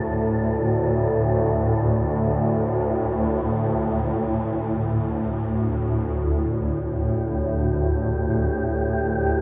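A swarming, detuned drone sits up front, low in the register from D2 to A2. Its sine tones are doubled in unison, warbling and evolving with a granular, vintage grain as they build slowly and sustain into long releases. Behind it, a mellow, breathy layer of tuned noise hovers between G4 and A4 like wind, airy and faint, and fades out over the first 6.1 seconds. The piece is ambient and moves in free time, resting on a D5 harmony with tuning at A4 = 441 Hz, and its mood is desolate and unsettling. Both parts carry their own reverb inside a lush hall of 2.6 seconds, giving a dreamy, soaked mix with a softened top end in this 9.4-second fragment cut from a longer piece.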